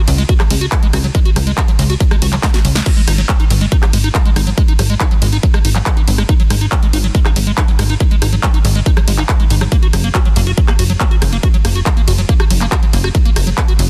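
An overdriven, punchy electronic kick sits up front from 0.3 seconds, driving a soaring, euphoric slice of uplifting trance at 140 BPM in straight 4/4, tuned to A4 = 436 Hz. Beneath it, a plucky analog bass with a wave-folded, tube-saturated bite pumps against the sidechain, while a squelchy, resonant liquid acid bass spins chorused, delayed arpeggios over chords moving from C#sus4 to G#5 and on to F#. A layered big-room kit adds handclaps, hi-hat, ride, crash, rim click and a soft-clipped snare, with a drum fill at 2.4 seconds, all in a dry, dense and heavily limited modern mix.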